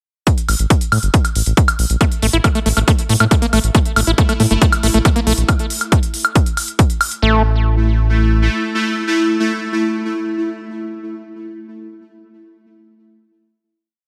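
Lightly reverberant and hypnotic, this short psychedelic trance piece drives an overdriven four-on-the-floor kick, smooth tape-warm electronic hi-hats and woodblock, and a deep, round galloping analog bass under a squelchy, gritty acid line with distortion, delay and sidechain pumping, until a mellow, detuned pulsing gated texture enters at 4.3 s and its chorused drone sustains the alien final chord from 7.2 s to 10.7 s.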